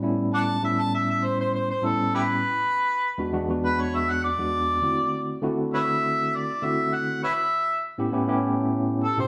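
A clean, tine electric piano with fast tremolo through a combo amp opens this gritty, laid-back blues excerpt at 100 BPM in A mixolydian, and at 0.3 seconds a warm, overdriven harmonica takes the up-front jazz-style solo with light vibrato and tongue slaps over swung A7, E7 and D7 changes, the band playing live together in a roomy large studio with a wet reverb.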